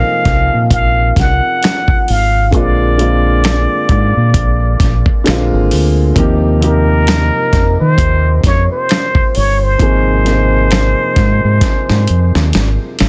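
A slow 66 BPM groove in 4/4 with swung sixteenths sets up this late-night, soulful neo-soul and R&B passage, cut from a longer piece. A gritty, compressed sampler-style kit of finger snaps, hi-hat, thumpy kick and a softly clipped snare enters at 0.3 s and closes with a fill from 11.6 s, over a dark, round, punchy fingered electric bass and the woody, open chords of an upright piano moving from Bb through Ebadd9 to Ab. Up front, a plunger-muted trumpet solos in jazz style with breathy wah-wah tone, vibrato, scooped notes and tape echo until 12.5 s, all within a dry, dense, heavily limited modern master.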